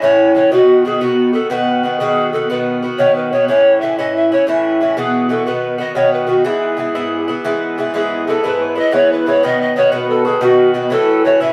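Rollicking and lively, this Celtic folk piece moves in a straight 9/8 and sounds like a short section lifted from a longer tune. A reedy bamboo pan flute carries the melody from the start, its airy, warm, tongued notes marked by a chiff, vibrato and rolled-off highs. Beneath it, an Irish bouzouki supplies picked accompaniment up front, its double strings giving a bright, metallic ring. At 8.0 s a mellow hammered cimbalom enters quietly with a shimmering second line in the same register as the flute. The harmony circles among A, B and E chords, with a brief Bsus4, across two passes of the same section, and the players sit a little back in a reverberant studio space.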